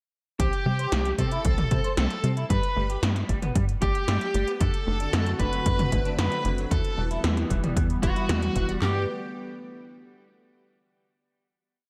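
Synthwave at 114 BPM in a straight 4/4, this short, complete piece feels dreamy and uplifting as it moves through Cmaj7, Gadd9, D7/F# and Em before settling on a final chord from 8.8 seconds. A smooth, dark, overdriven lead guitar carries a repeating riff melody with tape and slapback echo, doubled in unison by a shimmering string machine of violins sitting in the background under ensemble chorus. Beneath them, a warbly, dusty pluck runs a very quiet four-step arpeggio with a nasal, lo-fi tone, while a twangy, slightly broken-up electric guitar through a small old amp repeats an eight-step pattern with lush chorus and echo. A tight, driving sequencer bass with octave jumps and sidechain pumping anchors the low end, and two layers of 80s electronic pad drums supply a punchy machine kick, handclaps, gated snare and toms, and metallic hats. At 4.9 seconds a swirling phased analog pad joins with detuned, slowly evolving sustained chords that pulse with sidechain pumping, all set in a light reverb.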